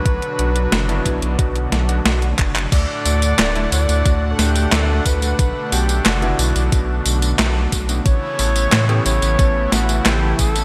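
An alto saxophone with vibrato and a smooth top carries a classical-style solo melody through digital delay from the start, over a brassy, detuned analog pad whose chorus, filter sweep and sidechain pumping add shimmer to this uplifting, romantic synthwave cut in D major at 90 BPM. A deep, round analog bass with tube saturation and a thumpy, overdriven electronic kick anchor the 4/4 groove, while a clean 12-bit drum machine places a medium-tuned snare up front among hi-hat, handclaps, tambourine and crash, all treated with gated reverb, with a drum fill at 2.4 seconds. A vintage, clangy-bassed electric grand piano adds delayed stabs in the background from 0.4 seconds as the chords move through Bm, D and Aadd9 in a bright 1980s-style digital production.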